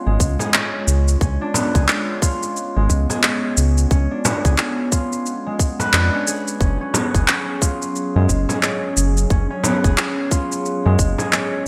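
A 16th-note swing at 89 BPM in 4/4 drives this earthy, warm organic downtempo excerpt: a tight, up-front electronic kick drum, layered electronic shaker and handclaps with small-room and gated reverb, and a distant, bright frame drum entering at 0.4 seconds. A round, deep analog bass pulses with sidechain pumping beneath ringing, thumb-plucked concert harp arpeggios trailed by digital delay, while a warbling, detuned tape-like pad with chorus and a nostalgic lo-fi tint sustains chords that move from C#7b9 to F#5 at 6.6 seconds. The mix sits in a moderate plate reverb with a bright, 1980s-style digital sheen.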